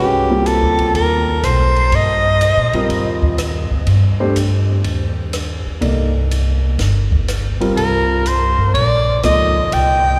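A swung 4/4 pulse drives this hypnotic, intense modal jazz fragment. A breathy, whispered soprano saxophone with vibrato and scooped notes carries the melody up front, pausing at 2.9 seconds and returning at 7.8 seconds as the harmony shifts from Cm11 to Eb. Beneath it sit warm grand piano accompaniment with audible action noise, a woody, thumpy pizzicato upright bass and a dry cocktail drum kit with dark cymbals and a high-tuned snare, heard within the long, cavernous reverb of a church or concert hall.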